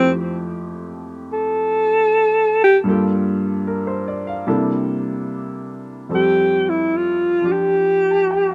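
Tender and late-night, this short jazz fragment swings gently in four, with a breathy alto saxophone carrying the melody up front in a mellow, whispered tone full of soft attacks, scooped notes and vibrato. A clear, natural baby grand piano accompanies throughout, moving from Fmaj9 through Gm7 and C13 before settling on Fadd9 at 6.1 seconds, where the saxophone's solo passage closes and a new section begins. Both instruments carry a slapback echo, and light reverb lends an open, outdoor air to the intimate performance.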